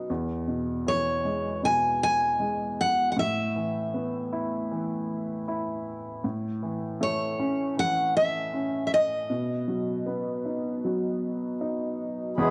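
A moderate echo-chamber reverb gives this intimate, heartfelt acoustic folk-pop ballad excerpt a roomy glow, at a straight, unhurried 78 BPM in 4/4 with tuning at A4 = 439 Hz. A worn baby grand piano with long sustain sits up front as accompaniment, while from 0.9 seconds a picked steel-string jumbo guitar carries the melody with a woody, full-bodied tone and the character of old strings, over chords moving from E6 to Asus2, A and B. At 12.4 seconds a reedy, breathing pedal harmonium briefly adds sustained chords just as the passage is cut off.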